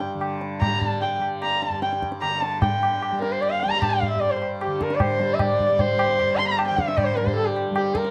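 Low-tuned, ringing tabla sets a straight 4/4 pulse at 151 BPM that gradually speeds up through this short cut from a meditative, introspective Hindustani classical performance in raga Bhimpalasi on G. A buzzing, shimmering tanpura drone sits softly beneath, and from 0.6 s a dark, intimate sarangi takes the melody up front, gliding with portamento, light vibrato and an airy bow as its sympathetic strings ring. A moderate studio reverb lends the production a warm, shadowed glow.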